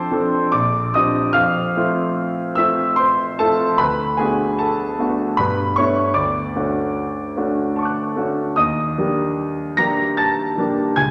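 Serene and hazy, this excerpt of impressionist solo classical piano drifts in a rubato triple metre. A clear, up-front concert grand with a deep, open bass spans from Bb1 to Bb6, moving through lush colours such as F6, Bb69, Fmaj7, G69, Dmaj7 and Ebmaj7. The piano sits in a wet scoring-stage reverb with a 1.8-second decay that lets each chord linger.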